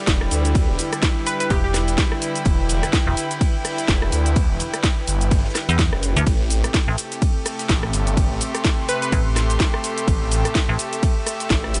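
Bass house at 126 BPM in E minor, swaggering and aggressive, with a punchy overdriven electronic kick up front and an overdriven house kit of cracking snare, bright hats, ride, rim click and shaker, driving a swirling phased detuned saw bass and, from 1.5 seconds, a metallic FM bass with tube saturation, both pumping against the kick. Meanwhile a reedy, gut-string chamber string section holds Em7 then Am7 chords over an airy, breathy chorused pad, a very quiet, dark cocktail drum kit sits beneath, and a glassy wavetable pluck with dub echo flickers briefly at 1.3 and 8.9 seconds in this cut from a longer piece.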